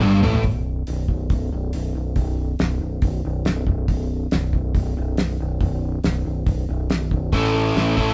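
A growling, overdriven electric bass carries this gritty, brooding classic rock excerpt at 140 BPM, pushing through a dry, cloth-damped drum kit with a fat snare and tight kick that opens on a fill, while two overdriven electric guitars, one biting and one crunchy, strike a brief riff at the start and return at 7.3 seconds on an A chord, the band captured live in one room with moderate reverb.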